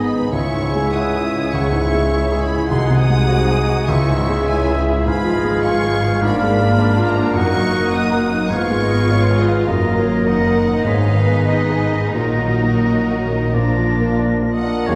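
In a freely rubato 4/4 pulse drifting between 85 and 107 BPM, this brooding, tragic romantic movement for piano and orchestra is cut from a longer piece and settles into Eb minor from 5.1 s. A clear grand piano sits up front carrying the melody across a broad span, joined by a lush, warm violin section that also carries the melody higher up with smooth, even vibrato. Behind them, a dark second violin section with soft attacks and expressive portamento weaves a second line alongside a solo oboe, a mellow clarinet and a pure concert flute with rolled-off highs. The accompaniment comes from a very quiet dark bassoon and a very quiet viola section, while a distant, roomy French horn section holds sustained chords and a close cello section and rich double bass section anchor the bass. A trombone section adds sustained chords only at the last moment, from 14.9 s. A wet scoring-stage reverb places the ensemble further back in the room, lending the harmony, which moves from C#m through diminished and dominant colors to a closing Bb, a spacious, sorrowful glow.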